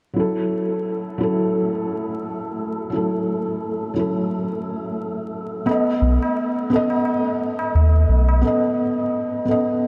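Trip hop at 87 BPM in F# dorian, brooding and smoky, with a lazy 16th-note swing and a dreamy mix soaked in huge ambient reverb and vinyl crackle. A felt-muted upright piano carries the accompaniment from the start, its thick-felt tone soft, dark and intimate, with audible action noise, tremolo, a low-pass filter and tape echo colouring it up front. Almost at once a breathy, wind-like tuned noise texture drifts in beneath it, slow to rise and long to fade. Around 5.7 seconds the harmony moves from F#m7 to B7 as a high-tuned, ringing tabla enters, joined at 6.0 seconds by a deep, round dub sub bass sitting up front. At 8.4 seconds the tabla, bass and noise texture drop away, leaving the piano alone in a short break until this fragment of a longer piece ends.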